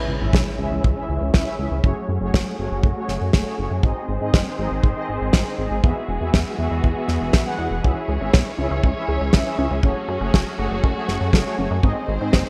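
A dry, tight kick drum sits up front alongside a fat acoustic snare, driving this melodramatic, bittersweet italo disco excerpt at 120 BPM in C# minor. A glossy, chorused pulse-and-saw synth bass holds the low end while bold, nasal analog synth brass stabs and a lush bowed string section with vibrato and portamento sustain chords through a filter sweep, all opening with a very quiet electronic impact. From 7.8 seconds a faint detuned unison pluck adds arpeggios, and the bright 1980s-style digital production sits in a moderate hall reverb.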